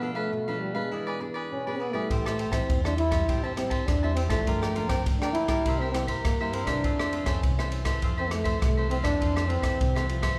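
In a moderate recital-hall reverb, this sunny, festive samba and choro fragment moves at 101 BPM in F major, tuned to A4 = 435 Hz. A breathy trombone carries the melody with light vibrato and a soft, whispered, intimate jazz tone, over crisp picked cavaquinho and fingerpicked classical nylon-string guitar, as the chords run from Bm7b5 and E7 through Am7, Gm7 and C7 to Fmaj7. At 2.1 seconds a woody pizzicato upright bass and an up-front open jazz drum kit join, the kit bringing a boomy kick, dark ride cymbal and rim click.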